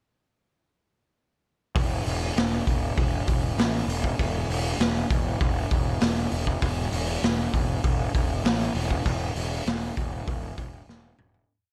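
Hard rock at 99 BPM in a straight 4/4 with a swaggering, energetic mood: from 1.8 seconds a bright, overdriven fuzz bass drives a riff in eighth notes while a raw, gritty garage drum kit with a punchy kick, medium-tuned snare, rolled-off top and pumping small-room character keeps a big rock groove up front, all set in a moderate concert hall reverb with a big arena sound before a fade-out from 9.1 seconds and a closing drum fill at 10.9 seconds.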